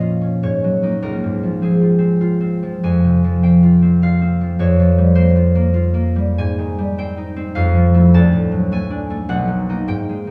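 Gentle and mysterious, this short classical excerpt for solo concert harp moves in a three-beat metre with uneven, rubato timing. The bright, ringing harp sits up front, fingerpicked across a span from B1 to A5 as the harmony drifts from Dbmaj7 and Fm toward Fmaj7, D and finally Bmaj7. A wet stone room's reverb surrounds the instrument, and the listening position feels set further back, with studio ambience.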